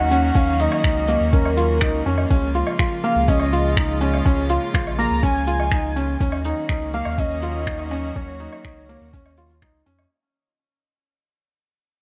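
A light reverb gives this short cut from a longer piano and strings electronica track a soft, luminous sheen, with the mood hopeful and the tempo a straight 123 BPM in 4/4. A velvety sawtooth synth lead with chorus and vibrato carries the melody from the start, floating over sustained chords from a chamber string section whose gut-string, reedy tone pumps with sidechain. A felt-muted upright piano plays an intimate riff up front, its mellow tone touched by tape echo and audible action noise. Underneath, a round sine sub bass also pumps with sidechain, while a jazz brush kit adds airy finger snaps, hi-hat and woodblock, joined at 0.4 seconds by a soft, tape-toned electronic kick. The chords move from Ebm7 to Db6 and back to Ebm7 at 6.2 seconds, and the whole passage fades out from 4.9 seconds onward.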